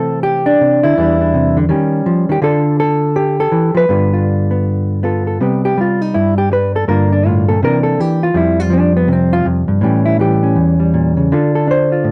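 A hollow-body electric jazz guitar carries this short solo jazz excerpt alone, its clean, dark, fingered tone sitting up front in the mix. The feel is swinging and sophisticated, moving at 163 BPM in 4/4 with a loose, rubato lilt over a swung eighth-note pulse in C major. The opening passage runs through rich harmony such as C6, Em7, Eb7, Dmadd9 and G9 before the music shifts into a second section at 5.4 seconds. From there the guitar stretches out through Gm9, C9, Fsus2 and A7b9, settling on Dm7 near 11.3 seconds as the fragment cuts off. A moderate studio reverb gives the single instrument a gentle sense of room around its notes.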